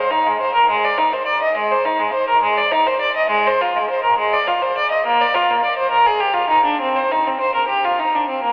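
Flowing and dance-like, this short fragment from a classical, baroque-style suite movement for unaccompanied violin moves in a lilting 12/8 with a free, rubato feel. A single bowed violin carries the whole passage from 0.0 to 8.5 s, its clear, focused tone sitting up front and colored by vibrato. The line ranges from Ab3 up to Eb5, and the instrument is tuned slightly high, with A4 at 444 Hz. A long, wet cathedral reverb with a 6.4-second decay surrounds the player, suggesting a church or concert hall. The whole recording has a narrow, telephone-like sound.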